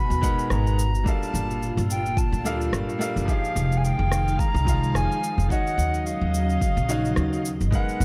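A dark, warm production with light reverb and the feel of a small room sets the tone for this short sunset chillout excerpt, relaxed and smooth at 108 BPM in 4/4 with a gentle swing on the sixteenths. A pure, metallic concert flute carries the melody from a distant perch, its vibrato and crisp attack trailed by delay. Beneath it, a brilliant baby grand piano plays open, long-sustaining accompaniment while a silky vintage string machine holds slow-blooming chords, its warbling ensemble chorus giving the pads a mellow shimmer. The upright bass sits up front, woody and thumpy from plucked steel strings, joined by a deep, layered electronic kick and a faint electronic cabasa with rim click. The harmony drifts through lush minor ninth chords, moving from Abm9 down through Gm9, Fm9 and Ebm9 before returning to Abm9 near 7.4 seconds.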